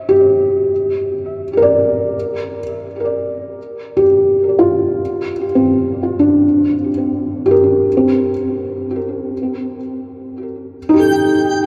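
Ambient excerpt in free time and C dorian, spacious and melancholic, where a felt-muted upright piano plays soft, dark arpeggios with delay up front in a dreamy cathedral-reverb mix, moving through Gm, C9sus4 and Eb before a twinkling granular texture with subtle chorus and an octave-up shimmer appears briefly at 11.0 seconds.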